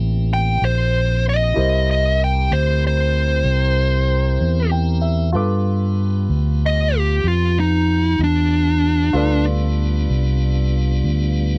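A slow 12/8 blues at 63 BPM with a straight, swaggering and gritty feel, this excerpt opens on C7 and moves to G7 at 5.3 seconds. A round, punchy fingered electric bass sits up front beneath a tonewheel organ holding piping, scooped chords through a slow rotary speaker, while a warm concert grand piano with deep bass accompanies and adds a fill from 4.4 seconds. A smooth, dark, overdriven lead guitar carries the picked melody from 0.3 to 9.4 seconds, all captured in a dry, close 1970s-style studio sound.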